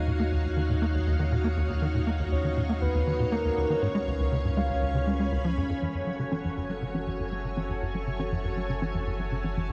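Expansive and hypnotic, this 120 BPM slice of ambient, sequencer-driven space music in Eb minor pairs a lush, vintage string machine and a deep, round sub bass with a punchy, saturated sequencer bass riff, with a soft octave-layered lead singing a vibrato-tinged melody from 2.3 to 5.3 seconds before the key shifts to F# minor at 5.8 seconds, where a warbling, lo-fi pluck arpeggio under a filter sweep and a bubbling, resonant stepped-filter texture drift in the background, all inside a wet, huge ambient reverb with a dark, warm production.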